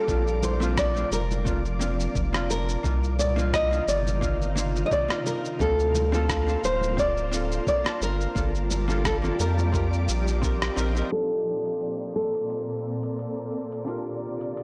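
A lightly swung 87 BPM groove in 4/4 carries this sunny, blissful sunset chillout piece in Bb major, where a fingerpicked nylon-string guitar with audible finger squeak sings the melody through tape echo. A dark, clean hollow-body jazz guitar, also echoed, and a shimmering, detuned ambient pad with chorus supply the chords. A round, deep analog bass sits up front until 11.0 seconds, while a gritty sampler-style kit of cabasa, hi-hat, rim click and a soft-clipped snare pairs with a thumpy electronic kick and very quiet, ringing congas. The whole is bathed in concert hall reverb, blown-out overdrive and a low-pass filter, with a filter sweep from 11.1 seconds to the close of the excerpt.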